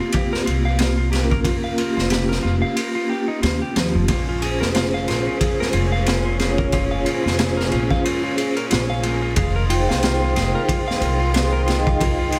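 A soft-mallet vibraphone accompanies this brooding, smoky trip hop excerpt, its metallic, ringing tone carrying tremolo and a slow motor vibrato, roughened by vintage 12-bit sampler grit and tape echo. Alongside it, a dark, compressed clean electric guitar picks arpeggios through its own tape echo, while a woody pizzicato upright bass sits up front. The raw garage drum kit, saturated and recorded in a small room, pairs a punchy kick with a high-tuned snare and ride cymbal, swung on the sixteenths and treated with tape echo; the kick drops out from 2.8 to 4.1 seconds. At 4.1 seconds the chords move from C7sus4 and Eb7/F to Bbm7, then to Fm7 at 9.4 seconds, as a clear, biting chamber string section enters low in the mix with bowed, sustained chords. Light studio reverb and an echo-heavy mix lend the piece a hazy, shadowed depth.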